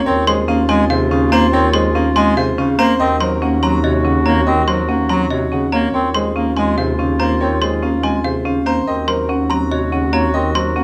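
This is minimalist classical pattern music in a brisk, asymmetric seven-beat metre, urgent and hypnotic, cut from a longer piece and lasting about 10.8 seconds. A clear concert grand piano carries the melody with long sustain, while a marimba with medium mallets and a dry, band-limited trough xylophone with wooden mallets spin arpeggios around it. A clarinet adds a narrow second line, and a soft-attacked bass clarinet supplies accompaniment beneath, both sounding distant and roomy. A bowed double bass, played expressively with vibrato and portamento, holds a single low pitch as the foundation. The harmony rocks between two chords over a sustained bass note, changing roughly every three seconds, and the whole ensemble sits in a moderate large-studio reverb captured with close, detailed microphones.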